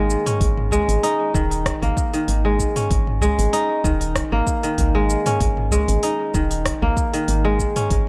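Up front, a crisp, ringing fingerpicked kora spins tape-echoed arpeggios over a single D#7sus4 chord in this mystical, earthy organic downtempo excerpt, carried by a soft, round, woody FM bass, a deep layered electronic kick entering at 0.4 seconds, a deep house kit with smooth hats, rim click, shaker and toms, and a deep, saturated udu in the background from 0.7 to 6.9 seconds, all in a dry, gritty recording with light reverb.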